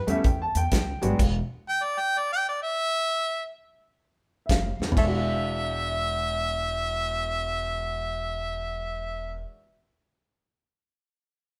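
Rollicking and swaggering, this electric blues shuffle at 127 BPM swings in E mixolydian, led by an up-front, overdriven harmonica with light vibrato, tongue slaps and scooped notes. The full band drops out between 1.2 and 1.4 seconds, leaving the harmonica alone until most of the others return at 4.5 seconds, with a drum fill at 4.7 seconds and the grand piano rejoining at 4.8 seconds. A worn, slightly detuned upright piano adds a high second line, a clear concert grand with deep bass comps beneath, a woody, growly pizzicato upright bass anchors the low end, and a soul drum kit with a fat snare and dark cymbals sits in a moderate stone-room reverb, all playing live together.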